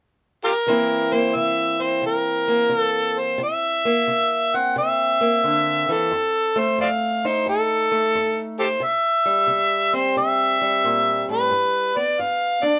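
A lightly reverberant, close-sounding recording opens this short excerpt of acoustic country blues, a gritty, soulful duo cut from a longer piece. At 89 BPM in 4/4 with a swung eighth-note feel, it sits in C mixolydian, moving from C7 to F7, back to C7 and onto G. An amplified, overdriven harmonica carries the melody from 0.4 seconds, its tone warm yet gritty, with vibrato, tongue slaps and scooped notes in a jazz-inflected solo voice placed up front. A fingerpicked steel-string parlour guitar joins at 0.7 seconds as accompaniment, its sound dark and boxy, also close in the mix but sitting beneath the harmonica. The pairing of the overdriven reed against the dark, boxy guitar gives the performance its rough, soulful character.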